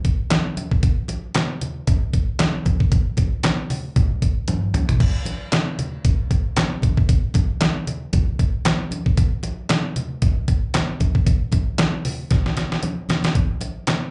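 Funk at 115 BPM in 4/4 with swung sixteenths, this late-night, slick fragment of a longer piece is built on a detuned 8-bit digital drum machine placed up front, its thumpy kick and medium-tuned snare joined by hi-hat, handclaps, toms and crash cymbal, with fills at 4.5 and 12.3 seconds. Congas with a thick skin enter at 0.3 seconds, sitting lower in the mix and carrying a slapback echo. The whole is heard as a live gig through the venue's PA, wrapped in club reverb and with a dull, rolled-off top end.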